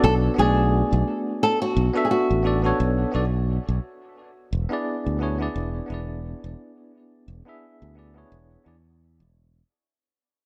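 A fingerpicked flamenco guitar carries the melody with audible finger squeak and a touch of tape echo, stepping away after 3.1 seconds in this relaxed, warm sunset chillout fragment at 87 BPM with a gentle swing. A clean, bell-like tine electric piano, softened by a low-pass filter and tape echo, plays the accompaniment through the Bm7 to E7 change at 4.2 seconds, while a punchy, bright fingered electric bass sits up front on the low end. Light reverb and studio ambience surround the parts as the whole fragment fades out.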